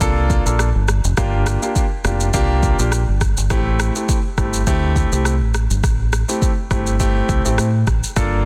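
Mellow and hypnotic, this afrobeats excerpt moves at 103 BPM in 4/4 with a light sixteenth-note swing, passing through Gm7, C7sus4 and Am7. A deep, round fingered electric bass sits dark and punchy up front, while an electronic afro-pop kit drives kick, rim click and shaker with a heavy low thump. An intimate concert grand piano accompanies in the middle register, its action noise audible and its long sustain polished, all set in a digital ambience with a dense, heavily limited modern master.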